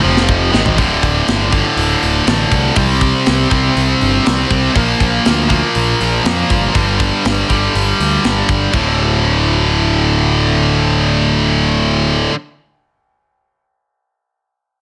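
A dry heavy metal recording in D minor at 121 BPM, heavy and relentless, where an up-front high-gain guitar and a tight second distorted guitar, both bright and picked, drive riffs through D5, C5, Bb and G5 over a fuzz-laden, overdriven picked bass, while a tight acoustic kit with bright cymbals and a medium-tuned snare opens on a fill and plays until 8.8 seconds, leaving guitars and bass to carry on alone until 12.3 seconds.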